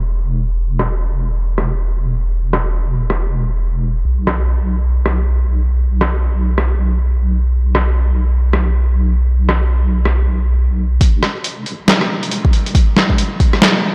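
A deep, soft wobble bass with a chorus effect opens this dark, cavernous deep dubstep excerpt at 138 BPM in a swung half-time feel, joined at 0.8 s by a muffled, pitched-down trip hop sampler-style kit of hi-hat, rim click and snare with a tape-warm character, before an overdriven electronic kick arrives up front at 11.0 s to drive a short build-up under light reverb.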